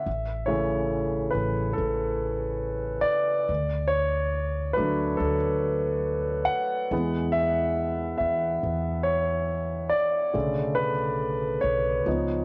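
An intimate concert grand piano opens this emotional, hopeful pop ballad at 70 BPM in A major, sitting up front with long sustain, audible action noise and a cassette-tape tint as it accompanies over A, D, E and Bm7, while a dark, woody pizzicato upright bass adds a thumpy low line from 0.1 seconds in a lightly reverberant home-cassette recording cut from a longer piece.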